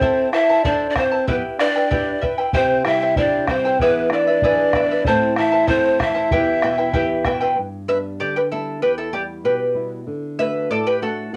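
Andean folk in E minor at 96 BPM in a straight 2/4, this short passage from a longer piece carries a melancholic, earthy mood. Breathy large pan pipes lead the melody up front with a cane tone, soft attack and audible chiff, while an alto saxophone adds a second line below with smooth vibrato in a classical style. A bright, shimmering charango, fingerpicked on double strings with some octave-doubled courses, sits forward in the accompaniment, and a round, band-limited bombo gives a vintage pulse. A thumb-plucked flamenco guitar joins at 2.5 seconds, and the harmony moves from Am and Em through C and E7 before turning to G, Em and D. Around 7.3 seconds the pipes and saxophone fall away, with the bombo following a moment later, and from 7.6 seconds the charango solos over the guitar, all set in a wet studio reverb with the soft grain of a home cassette recording.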